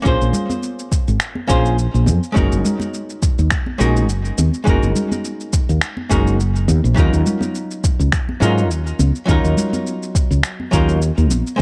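Relaxed and warm, this sunset chillout fragment, cut from a longer piece, moves at an easy 104 BPM in 4/4 with a gentle 16th-note swing. A miked and amplified archtop guitar plays clean, picked hollow-body accompaniment, set up front with a digital delay trailing its lines. Beneath it, a woody fretless electric bass sits prominently in the mix, its round, growly tone thickened by tube saturation and a lush chorus. The rhythm rests on a deep, tape-toned electronic kick with small-room ambience, while gritty, compressed electronic shaker and finger snaps add texture and high-tuned congas bring a bright, close and dry snap, struck with hard hands. The harmony drifts from Bbm7 to Gb6 at 2.4 seconds and then to Ebm7 at 6.7 seconds, all wrapped in a dark production with light reverb.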